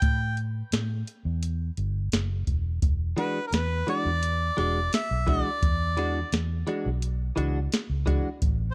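This swaggering, gritty soul blues passage opens with a pop-style harmonica solo, pushed through overdrive, over a soft vintage rhythm box and a muted, fingered electric bass at 86 BPM in a straight 4/4. The analog drum machine pairs a deep kick with a tonal snare and metallic hi-hats. The bass sounds dark, round and amped, its foam-muted notes anchoring the groove. The harmony moves from an A7 chord to E9 at 2.8 seconds, and at 3.2 seconds a clean electric guitar enters with bright, twangy picked stabs, recorded direct, compressed and coloured by analog chorus. Every part sits up front in a dry sound with little reverb, and the passage is cut from a longer piece.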